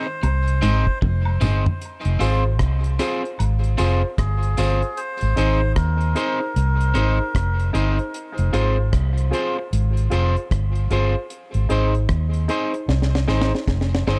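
Light reverb and studio ambience frame this meditative, deep dub reggae passage cut from a longer piece, set in F minor at 76 BPM with a swung sixteenth feel. A dark, foam-muted vintage fingered bass and a dry, deep reggae drum kit with a high-tuned snare and tight kick sit up front. Meanwhile, a slightly broken-up picked electric guitar accompanies through tape echo, a twangy, scooped guitar with chorus and echo adds a brief riff in the background, and woodblock and tambourine add soft, tape-echoed colour early on. A reedy, breathy melodica carries the melody until 7.7 s, while a clear grand piano with audible action noise enters with echoed stabs at 2.2 s as the harmony moves between Ab and Fm.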